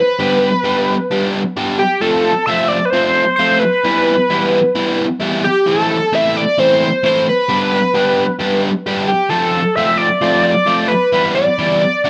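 Rock with a jangly, wistful mood, this excerpt from a longer piece pairs a gritty, screaming overdriven synth lead carrying the melody with a fuzz guitar riff that enters at 0.2 seconds. The synth sits up front with distortion, phaser and vibrato on its detuned sawtooth tone, while the double-tracked, picked guitar adds bright fuzz beneath it. Chords move through G, F, Em and Am, then G, F6 and Em7, all in a wet studio reverb.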